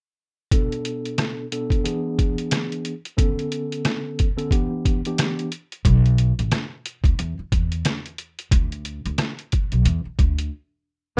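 A swung, muffled, pitched-down sampler drum kit with a thumpy kick, rim click and hi-hat drives this moody, dark boom-bap hip-hop excerpt, where a mellow, clean tine electric piano with cassette-tape grit plays seventh chords until 5.5 seconds, then a woody pizzicato upright bass on gut strings takes over at 5.9 seconds, all in a dry, rough home-demo mix that falls into a brief break at 10.5 seconds.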